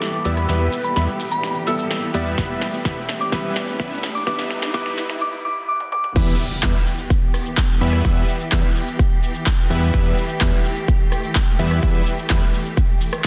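Euphoric and emotional, this festival progressive house excerpt in E minor at 127 BPM opens on a build-up where a soft, warbling FM bell melody with chorus and tape echo floats over a clear, worn grand piano, veiled con sordino strings, and a crisp, punchy big-room drum kit with fills. At 0.3 seconds a bright, lush supersaw riff under a filter sweep enters together with a fat, saturated analog bass. An electronic kick drum arrives up front at 2.4 seconds while a riser and impact sit in the background. At 6.2 seconds the drop hits on a single E minor chord, with the bell and piano giving way to the huge supersaw chords, pumping bass, strings, and drums under a dense, heavily limited master with light digital ambience.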